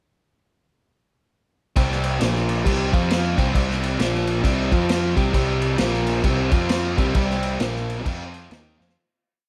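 A lush hall reverb gives this short, complete piece a big arena sound, setting a brooding, heavy blues rock and southern rock power-trio groove in C minor at 133 BPM with a swung 4/4 feel. All three parts enter together at 1.8 seconds. A biting, double-tracked overdriven electric guitar sits up front with a bright power-chord riff cycling through C5, Bb5 and F5. A fuzz-drenched picked electric bass doubles that riff as a syncopated line. The vintage acoustic kit brings a punchy kick, a medium-tuned snare, dark cymbals with crash accents and a rolled-off top for a rock big groove. The track fades out from 7.2 seconds, landing on a C minor chord at 8.5 seconds before a drum fill at 8.7 seconds.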